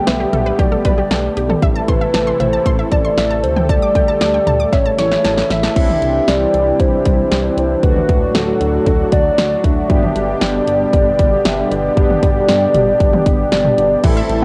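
A hollow, woody clarinet-like synth lead carries the melody through this wistful yet bright synth-pop excerpt at 116 BPM, colored by chorus, vibrato and tape echo over a thick, nasal unison pad and a mellow chorused synth bass. A punchy, up-front house drum kit with bright hats drives the groove, while a lush unison pluck spins arpeggios until a drum fill leads into the entrance of fat, brassy analog synth brass at 5.8 seconds; the pluck returns briefly at 14.0 seconds. Moderate spring reverb and the character of a home cassette recording color the whole.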